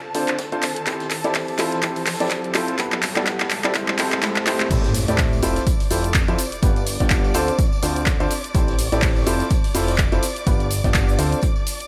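A light small-room reverb frames this energetic, bittersweet piano house excerpt at 125 BPM, swinging gently on the sixteenths as it cycles through Dm7, Am7, Fmaj7 and G chords. A clear, woody upright piano riff sits up front with tape echo and a low-pass filter, over a punchy electronic kick, a layered house kit of handclaps, hi-hat, shaker and crash, and a faint vintage kit with a high-tuned snare, while a fat, detuned analog bass and a dark, expressive violin section with vibrato and portamento pump underneath from the background. An electronic riser and drum fill build through the opening until the drop lands at 4.7 seconds with a sub-drop impact, and a band-limited tambourine joins from that point.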